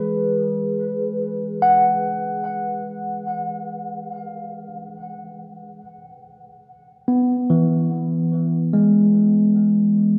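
A lone tine electric piano opens this serene, weightless ambient piece in E major, its bright, barky and clean tone pushed through a combo amp and sitting up front as it drifts in free time between E3 and F#5. A diffuse ambient delay trails the piano, the whole recording is bathed in a wet concert hall reverb, and the worn cassette sound adds a warbly pitch drift. Cut from a longer piece, it rests on an E chord from the start and lasts 10.2 seconds, with a second passage beginning at 5.8 seconds.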